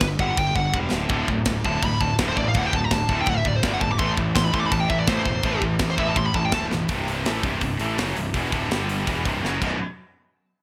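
Polished 1980s-style digital production with light studio reverb frames this epic, dark heavy metal excerpt, where a dark-toned, high-gain lead guitar with distortion and digital delay carries a soloing melody until 6.6 seconds. Beneath it a high-gain distorted guitar plays a riff in the background, joined at 1.1 seconds by a scooped high-gain guitar, while a growly, overdriven fuzz electric bass holds the low end. An up-front, tight metal drum kit with bright cymbals and gated reverb keeps a straight 4/4 pulse and adds fills, the last from 9.4 seconds, as the chords move through G5, D5, Am and C5.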